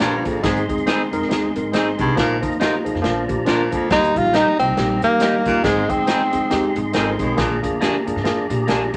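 A breathy, up-front tenor saxophone carries the melody from 3.9 to 6.8 seconds, with vibrato and scooped notes, in this joyful, uplifting slice of uptempo 1960s-style soul swinging at 138 BPM. Beneath it, a worn, slightly out-of-tune tine electric piano opens with a short fill and carries the accompaniment. A distant, roomy baritone saxophone plays a low riff, a twangy guitar on the edge of break-up adds stabs, and a tonewheel organ holds clean sustained chords through a slow rotary speaker with chorus vibrato and key click. Meanwhile a woody, growly pizzicato upright bass and a dark, smooth big-band drum kit with punchy kick and medium-tuned snare drive the swing in a moderate studio ambience, over chords moving from Ab through Eb to Bb7.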